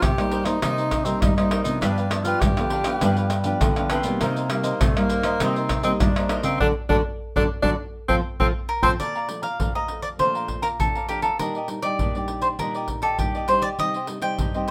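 A clear tenor saxophone with vibrato, subtone and scooped jazz phrasing takes a solo over crisp picked cavaquinho, thumb-plucked nylon-string guitars on chords and bass, and a soft-handed percussion section of maracas, pandeiro, tamborim and deep surdo in this joyful, playful samba and choro excerpt at 100 BPM, with a band accent from 6.6 s before the saxophone and bass guitar stop at 8.9 s and the cavaquinho takes the melody from 8.7 s as the music settles into Bb major.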